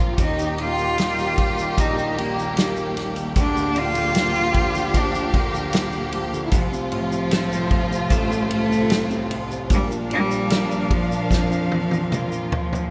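A straight 4/4 pulse at 75 BPM carries this heartfelt, tender pop ballad fragment, where a natural country drum kit with a punchy kick, medium-tuned snare, ride cymbal, toms and gated reverb enters at 0.2 seconds alongside a grainy egg shaker, closing on a drum fill from 11.3 seconds. A rich, bowed solo cello with vibrato carries the melody over a concert grand piano with deep bass and audible action noise, a lush violin section on the second line, and a smooth string section holding sustained chords with portamento in the background. A very quiet, twangy electric guitar at the edge of break-up picks arpeggios through the chords Eb, Bb/D, F/C and Bb, all set in a bright 1980s-style digital production with light small-room reverb.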